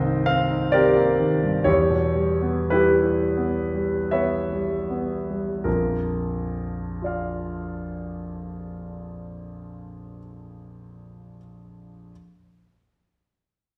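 Heard from further back in a wet recital hall with a 1.4-second reverb, this dreamy, luminous excerpt of impressionist classical solo piano in Bb lydian drifts in a rubato 3/4 between 37 and 68 BPM, the clear concert grand sounding natural and up front with deep bass from Bb1 to G5 as it slows through Cm7 and Em6 before settling on Bb at 5.7 seconds for a new section.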